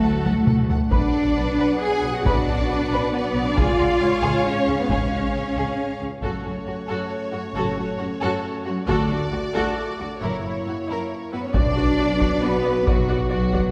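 A dark, dramatic cut from an epic orchestral film score opens on the strings and brass in 3/4 at 136 BPM in F# harmonic minor: a clear, vibrato-rich violin section carries the melody over a smooth second violin line, intense viola accompaniment, and focused cellos with distant double basses anchoring the bass. Mellow French horns and tight trombones hold sustained chords in the background, with the trombones dropping out at 6.0 seconds and returning at 11.5 seconds. A taiko ensemble struck with hard sticks enters at 0.3 seconds amid a brief drum fill and drives the music as the chords move from D through Bm, C#, F#m and F#7, all heard from further back in a wet scoring-stage reverb.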